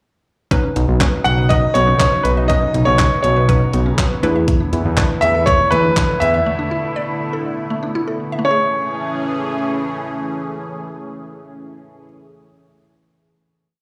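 Euphoric and carefree, this short dance-pop piece at 121 BPM in A major sets a clear, up-front grand piano melody of song-like motifs over a lush, phased and pumping unison pad, a woody, nasal mallet-like synth pluck rippling sixteenth-note arpeggios in the background, and hollow, warbling square-wave chord stabs, while an overdriven, thumpy 8-bit drum machine with a four-on-the-floor beat and a fat, detuned sawtooth bass playing off-beat drive the groove until about 6.3 s, before a final Amaj7 chord rings out from 8.4 s, all heard as if through a live venue's PA with club reverb.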